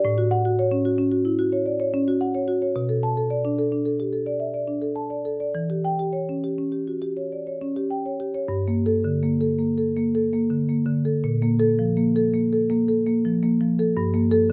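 This contemporary classical piece for solo marimba has a hypnotic, flowing mood, its lines unfolding in 5/4 with a loose, rubato feel. The marimba, played with soft mallets on rosewood bars, has a woody, mellow and round tone, and it sits up front across a range from G2 to A5. The opening section moves through A6, Bm7 and Em6 chords. At 8.5 s the harmony shifts to G minor in a new section built around Gmadd9 and Bb5, returning to Gmadd9 near the close at 14.0 s. Close, detailed microphones and very little reverb keep the sound dry and intimate, and this short fragment is cut from a longer work.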